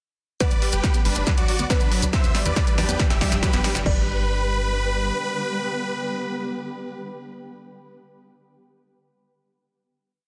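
A dense, heavily limited modern master with light reverb frames this short, soaring uplifting trance piece in G major at 139 BPM, which opens with a build-up and drum fill at 0.4 s and settles on a final held chord at 3.9 s. A huge, euphoric detuned supersaw lead with 12-bit sampler grit, sidechain pumping and digital delay plays a repeating riff in thirds and sixths. Beneath it, a glassy, crystalline wavetable pluck with tape echo plays its own riff in octaves, a shimmering, ethereal pad enters at 1.6 s, and a round analog pluck cycles a 6-step loop that drifts against the bar, while a heavy, tape-touched four-on-the-floor kick, a punchy analog drum machine with snare, hats, toms and crash, grainy hand-played maracas, a very quiet riser and a plucky, funky galloping sixteenth-note bass drive the build.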